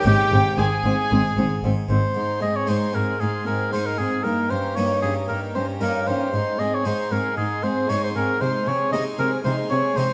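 Stormy and driving, this baroque-style concerto excerpt puts an up-front oboe with light vibrato and a smooth top on the lead melody, set over a high violin section line and a lower violin second line, both gut-string and in the background; an airy, French-style harpsichord and a dark viola section fill in the accompaniment, a nasal, rich cello section carries the bass, and a double bass section joins it only from 0.1 to 2.0 seconds, inside a wet recital-hall reverb.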